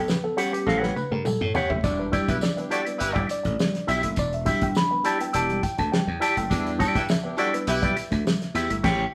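Recorded live in one room with a wet studio reverb, this sly 103 BPM funk excerpt in E dorian features a worn, slightly out-of-tune tine electric piano soloing with stabs throughout, over a growly, punchy slap bass, a muffled, lo-fi soul drum kit with a fat snare that plays a fill from 0.7 to 1.8 seconds, a jingly tambourine in the background, an up-front, twangy electric guitar with an envelope filter, a very quiet, dark fingered guitar riff, and a distant horn section with light vibrato entering at 1.8 seconds as the harmony moves from A13 to Em7, before a band accent at 8.8 seconds.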